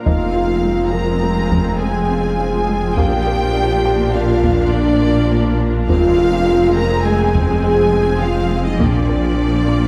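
A straight 5/4 pulse at 103 BPM drives this vast, brooding excerpt of a hybrid orchestral and electronic film score in F dorian, where a taiko ensemble struck with heavy sticks sits in the background beneath mellow French horns holding sustained chords over a Fm and Bb alternation. Clear, intense violins carry a distant second line above rich, smooth violas and cellos, while bright double basses and a deep, clean sine sub bass anchor the low end. A shimmering, ethereal ambient pad with chorus and octave-up shimmer, very quiet analog pluck arpeggios, and a soft, felt-muted upright piano that drops out at 5.9 s add texture, all set in a moderate scoring stage reverb.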